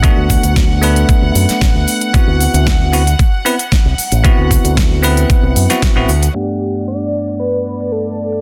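A dense, heavily limited sound with light reverb carries this sunny, feel-good nu-disco clip, where a knocking electronic kick, a pop kit with a fat snare and crisp hats and a very quiet egg shaker drive the groove, while a warm envelope-filtered fingered bass and a bell-like tine electric piano with slapback echo pump to the sidechain alongside distant, reedy strings, until at 6.4 seconds a thick, detuned sawtooth unison lead with tape echo takes the melody over a Gmaj9 chord as the strings get a filter sweep.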